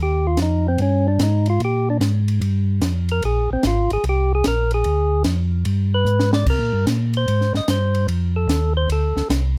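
A short excerpt of a soulful, swinging soul jazz organ trio at 148 BPM in 4/4 with a shuffled eighth-note feel opens at 0.0 s with two tonewheel organs sounding together. A fat, lightly overdriven organ with third-harmonic percussion and key click carries the melody from C4 to Eb5 through a stopped rotary speaker, while a second tonewheel organ, round and dark with vibrato and a slow rotary speaker, plays the bass line between Ab1 and C3. A compact cocktail drum kit joins at 0.4 s, its high-tuned snare, punchy kick, hi-hat, ride and crash cymbals sounding airy and polished in a small room, with a brief fill around 6.1 s. Both organs sit up front, the bass organ a touch louder than the lead, over harmony that moves from Ebadd9 and Bbsus2 through Dm, G and C5 to F7 in Bb mixolydian. The close, detailed recording carries little reverb, keeping the key clicks and percussive attack crisp.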